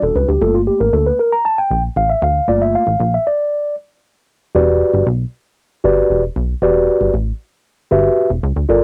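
This early-eighties boogie funk excerpt moves at a danceable 116 BPM in a straight 4/4, tuned slightly sharp to A4 = 441 Hz. A mellow, clean tine electric piano sits up front, voicing Gm9 from 0.4 seconds before the harmony moves to Em9 at 4.6 seconds. The piano carries a solo passage over the opening half, and a stop arrives at 3.5 seconds before the second section begins. Underneath, a plucky analog bass built from sawtooth, square and triangle waves with wave folding gives a punchy, funky low end, its fast attack and filter pluck decaying. The home cassette recording is dry, with little reverb, giving both parts a close, up-front presence.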